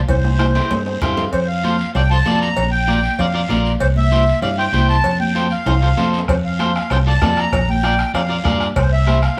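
A growly, amped fingered electric bass sits up front in this joyful, danceable cumbia, cut from a longer piece and played live by a band in one stone-walled room with moderate reverb. Above it, a reedy accordion carries the melody with a sweet, dark, smooth tone and a light tremolo tuning, while a slightly broken-up, scooped electric guitar picks out the accompaniment. The percussion is rich: ringing cowbell and timbales with a metal shell, high-tuned congas struck with hard hands, and a raspy guiro tucked into the background. A vintage, band-limited bombo with a soft beater opens the passage alongside a drum fill, drops out at 1.2 seconds, and returns at 6.3 seconds just after a second fill. The harmony cycles through C, F and B-flat in a steady dance groove.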